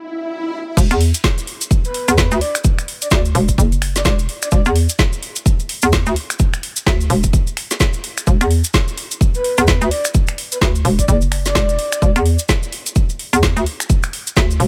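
An electronic swell opens this gritty, aggressive bass house excerpt before the drop lands at 0.8 seconds on an E5 chord at 128 BPM with swung sixteenths, where a hollow, bouncy FM bass with overdrive and sidechain pumping sits up front beside a punchy, tape-touched electronic kick and a garage kit of woody snare, metallic hi-hats, finger snaps and crash cymbal, the mix carrying little reverb, while a grainy acoustic cabasa adds bright texture and a breathy, flute-like synth lead with chorus, vibrato, tape character and delay floats in softly from 1.8 to 4.6 seconds and again from 9.3 seconds.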